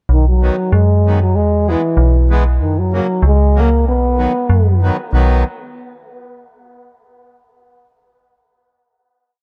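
A straight two-beat pulse drives this short, complete alpine folk piece for a small alpine dance band, and its mood is bouncy and jolly. A metallic FM bass with a digital, mellow, fast-attack, decaying tone sits up front, playing root and fifth on the main beats. Entering at 0.4 s, the accordion adds reedy, dark, smooth triads on the off-beats. Over them, a euphonium carries a motif-based melody in period phrases in a classical style, with a warm, distant, roomy character, light vibrato and a dub echo trailing its notes. The chords move through B, E and F# before returning to B, and the piece closes on a final chord held from 5.1 s. Light reverb and an echo-heavy mix shape the sound of the recording.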